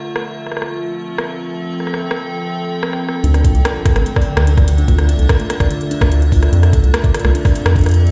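This eerie, glitchy IDM excerpt in D minor opens on an icy glass pad holding sustained, crystalline chords from Fadd9, joined at 0.2 s by an electro analog drum machine whose metallic hats and rim clicks sound tape-softened and filtered, as if re-recorded in a large room. At 3.2 s the music moves to Dmadd9 as a round analog bass enters up front, deep and slightly nasal with tube saturation, alongside a harp-like synth pluck playing ringing arpeggios roughened by 12-bit sampler grit, chorus and delay. An overdriven electronic kick arrives at 3.4 s, soft yet produced, driving the straight 4/4 pulse at 146 BPM before the harmony returns to Fadd9 at 6.5 s. The pad carries a chorused, airy shimmer in its own reverb, while the whole mix sits in a bare, cavernous space with a large studio reverb, like a big sound system heard in an empty hall.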